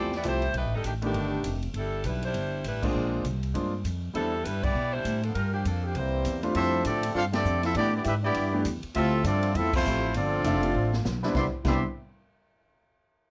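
A lively swing feel drives this energetic big band jazz passage, cut from a longer piece, with a pizzicato upright bass whose woody, steel-strung tone sits up front, and an acoustic drum kit of ride, hi-hat, medium-tuned snare, boomy kick and crash cymbal heard in a natural studio room. A bright saxophone section with a smooth top carries the opening melody until 6.4 s, backed by an intimate, warm concert grand piano with audible action noise, deep bass and long sustain that drops out briefly and returns. A clear trombone section with light vibrato joins on a second line at 5.9 s. An up-front trumpet section takes over the melody at 6.6 s, over jazzy extended harmony such as Fmaj9, A9sus4 and G13sus4. Band accents punctuate the groove, a drum fill leads into the closing Cmaj9, and light reverb gives the ensemble a touch of space.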